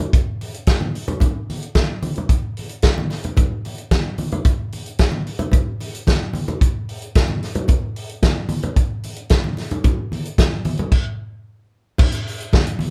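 A sultry, danceable disco groove at 111 BPM in a straight 4/4, cut from a longer piece and carried entirely by drums and percussion. A vintage acoustic drum kit sits up front, its punchy kick, medium-tuned snare, hi-hat and crash cymbal heard with a rolled-off top and a natural studio-room character. Low-tuned congas with a thick, damped skin play beneath it, struck with hard hands and mixed quieter than the kit. Both parts play from the opening through 12.9 seconds, with a stop from 10.9 to 12.0 seconds breaking the groove. The band sounds as if playing live in one room, wrapped in a moderate studio reverb that gives the percussion a warm glow.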